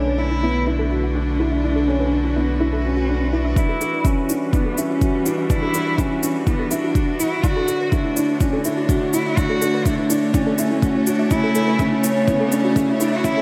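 Cinematic and melancholic, this piano and strings electronica piece moves at 124 BPM in a straight 4/4, set in E dorian and cut from a longer work. An up-front bowed cello carries the melody with vibrato, portamento and a soft attack, while a close, sul tasto string quartet holds dark sustained chords with an airy bow. A woody, boxy upright piano repeats a riff through chorus and delay, its action noise audible, and a soft, round pluck spins detuned arpeggios in the background, treated with cassette tape and a filter sweep. A deep sine sub bass pumps under the opening until 3.5 s, then at 3.6 s a layered electronic kick and a tape-toned shaker enter as a build-up begins. The chords move from Bm7 through Emadd9 and Dmaj7 to A, and a lush hall reverb soaks the mix in a dreamy haze.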